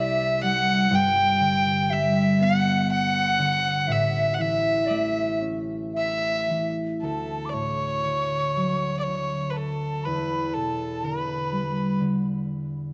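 Celtic slow air in D major at a rubato 59 BPM in 3/4, nostalgic and tender, where an earthy, nasal fiddle with light vibrato carries the melody up front, an airy, hollow concert flute traces a second line in the background, and a mellow, thumb-plucked concert harp rings out beneath them until it plays on alone from 12.0 to 12.9 seconds, all within a moderate concert-hall reverb in this cut from a longer piece.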